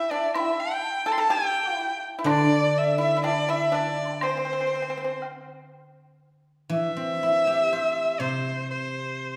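Chinese traditional chamber music, pastoral and festive, unfolds in a free, rubato 2/4 in this short passage cut from a longer piece, set in the lingering reverb of a recital hall. A clear, bowed erhu carries the melody up front with light vibrato and smooth portamento, while a mellow, hollow large dizi with a buzzing membrane sits airily in the background beside a dry, percussive pipa and a very quiet, close woodblock, the three falling away by about 5.5 seconds. A ringing, silvery guzheng enters at 2.2 seconds and stays with the erhu to the close at 9.4 seconds.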